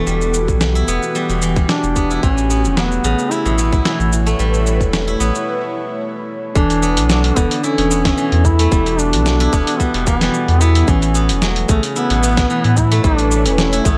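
Organic downtempo in E dorian at 111 BPM with a light 16th-note swing, hypnotic and meditative, moving between Em7 and A7 in this excerpt cut from a longer piece. A deep, round sub bass sits up front and pumps against a tight, overdriven electronic kick entering at 0.5 seconds, while a gritty sampler-style kit with a fat snare, hi-hat and shaker adds dusty drive; a bright, silvery steel-string zither, played with fingerpicks, rings out arpeggios through tape echo over an airy, breathy pad with chorus, phaser and pumping in the background. A mellow, distant duduk takes the folk-style solo melody from 1.7 seconds with vibrato and scooped notes, a dark bronze singing bowl hums very quietly beneath, and a short break at 5.5 seconds leads into the second section at 6.6 seconds, all in a dry, close sound.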